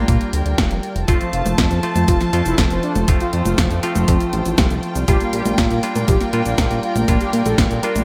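Opening on a fat, brassy analog synth lead carrying the melody through chorus and delay over dark, sul tasto string chords, clean hollow-body guitar stabs and a glossy, chorused pulse-wave bass, this romantic, sunny italo disco excerpt in F major at 120 BPM brings in a thumpy sampler-style kick and a layered house kit with a punchy snare, cabasa, congas and hi-hat under gated reverb at 0.1 seconds, all moving from Bb6 to F and back to Bb6 in a light digital ambience.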